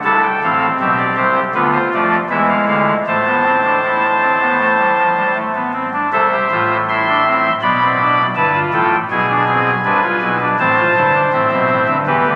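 A solo pipe organ with a soft reed voice sits up front, its oboe stop speaking with a baroque voicing, chiff at the start of notes and a tremulant. The piece is a stately yet lively baroque-style four-part fugue in A minor, moving at 80 BPM in a straight 4/4, and this clip is cut from a longer performance. The organ spans G1 to C6, and the harmony moves through Am, Bm7b5/D and E7 before coming back to Am, with the second section beginning at 6.1 seconds and settling on Am again at 10.6 seconds. A wet cathedral reverb with a 6.2-second decay surrounds the playing. The sound was captured on a phone in the room, so club ambience surrounds the organ's reedy tone.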